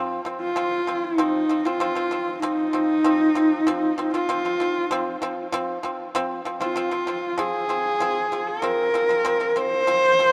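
Mongolian folk in F yu mode at a straight 97 BPM, this short excerpt of a longer piece feels vast and windswept, set in a huge ambient space with a dark, warm production. The acoustic pipa opens at 0.0 seconds with bright, dry, percussive arpeggios played with fingerpicks. At 0.4 seconds a single bowed horsehead fiddle enters up front with a clear, husky, focused melody on horsehair strings, colored by vibrato and portamento.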